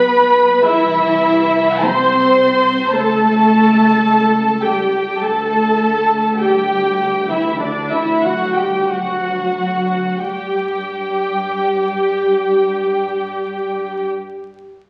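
Heard through the crackle of a very old 78 rpm record in a wet recital hall, this slow, lyrical classical movement for string orchestra drifts in rubato 4/4 at around 43-57 BPM, easing down over the first 10.3 seconds as rich, up-front violins sing the melody above a softer background violin line, lush violas, expressive close cellos and a dark double bass section with gliding portamento, all bowed with vibrato over chords moving from C to A7/C# and G5/D before settling on D.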